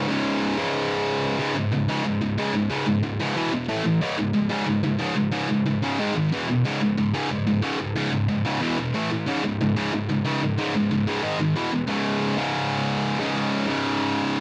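Metal with an epic, aggressive mood, this dry, close 1970s-style studio recording features a lone bright, picked, double-tracked high-gain electric guitar, up front and heavily distorted, that drives through power chords built around C#5, E5, A5 and G#5 before landing back on C#5 at 11.9 seconds.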